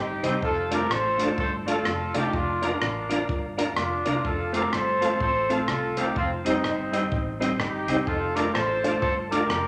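Joyful and cheerful, this short ska excerpt bounces along at 126 BPM in 4/4 with a swung eighth-note feel, set in F mixolydian. A clear, tight horn section carries the melody up front, its vintage pop-style tone punchy and touched with light vibrato. Underneath, a hollow-body short-scale electric bass, fingered and amped, supplies a round, dark foundation, while a mellow, clean electric guitar adds accompaniment through a tape echo. A tonewheel organ punctuates with smooth stabs colored by chorus vibrato and a fast rotary speaker, and a compact cocktail drum kit keeps time on hi-hat, kick and rim click, its kick punchy and its top rolled off. The whole band sits in a wet large-studio reverb as the chords move from Dm/F through Bb/F to F and back to Dm/F at 8.1 seconds.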